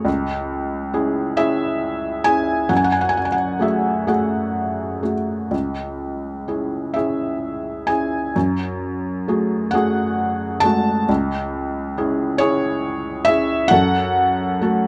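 Classical solo piano in 6/8 with a rubato feel, this melancholic, reflective passage is played on a felt-muted upright piano that sits up front and sounds soft and intimate, with the mechanical action audible. The harmony rocks between C#m and F#madd9 before settling on F#m at 13.7 seconds, and a light reverb surrounds the piano across this 14.9-second fragment of a longer piece.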